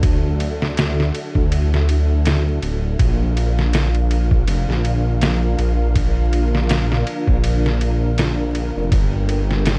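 Trip hop at 81 BPM with a lazy 16th-note swing, melancholic and brooding, moving from D to Bb and arriving on G minor near 8.9 seconds in this short cut from a longer piece. A deep, rumbling detuned saw bass sits up front with saturated, beating tones, beside a sampler-style drum kit that is compressed, pitched down and muffled, with a thumpy kick, medium-tuned snare and ride cymbal in a small room ambience. Behind them, a string machine playing cello chords adds a full, vintage, warbling pad with slow attack and ensemble chorus, all wrapped in a dark production with vinyl crackle and little reverb.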